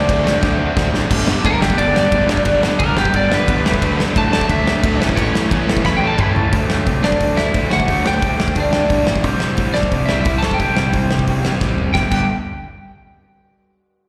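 This upbeat, energetic punk rock clip sounds like a live gig heard through the venue's PA, with light reverb, small room ambience and a recital-hall tail around it. Up front, a loose acoustic drum kit with a punchy kick, medium-tuned snare and pumping room sound drives a straight 4/4 across crash, ride, hi-hat and toms, with short fills between sections. Behind it, a growly fuzz bass with an overdriven edge holds down the low end, while a raw, bright garage guitar and a warm, crunchy overdriven guitar play riffs dressed in slapback echo. A second crunchy guitar, double-tracked, joins only briefly at the start and again from 3.8 seconds. The twangy, slightly broken-up lead guitar carries the melody through compression, slapback echo and digital delay, breaking into a solo from 1.1 to 6.5 seconds over chords that move from G through D, A and C.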